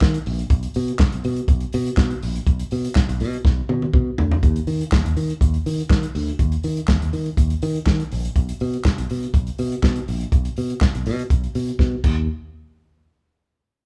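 A gritty, saturated soul drum kit drives this disco excerpt at 122 BPM, its tight kick, medium-tuned snare, handclaps and dark cymbals sitting up front in a dry, pumping room with a rolled-off top, breaking into fills at 3.4 and 11.8 seconds. A fingered electric bass, direct and warm, runs underneath in a straight 4/4 groove that feels driving and glamorous. The band plays together in one room with light reverb, and both parts fall silent by 12.3 seconds as a new section begins.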